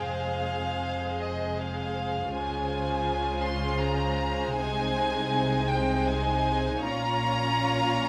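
A warm, up-front first violin section carries the melody in this serene, tender excerpt from a slow romantic movement for string orchestra, its smooth top line sitting between Eb5 and C6 with even, vibrato-rich bowing. Beneath it, a second violin section adds a rich inner line, while a somewhat distant viola section supplies accompaniment and the cellos join a dark double bass section, whose soft attack and expressive portamento shape the low end. All five parts play together throughout the 8.1 seconds, moving through Fm, Dbmaj7, Ab/C and Bbm in Ab major. The pulse sits at 79 BPM in 3/4, shaped with a flexible rubato feel. A moderate recital hall reverb surrounds the ensemble, lending the blended chamber strings a gentle sense of space.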